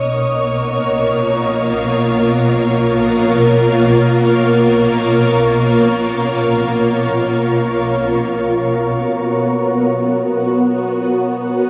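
Warm and luminous, this short ambient fragment drifts freely, unbound by any pulse. A single granular cloud pad carries the entire piece, sitting up front as it spans B2 to D#5 with a cloudy, blurred, detuned sine character. Its slow attack, long sustain and lengthy release let each tone bloom and linger, while its built-in reverb adds to the mellow, evolving haze. The harmony rests on A#m/B before settling onto Bmaj7 at 8.1 seconds. A huge, wet ambient space with an 8.7-second decay and a cassette-tape patina wrap the pad in a dreamy glow.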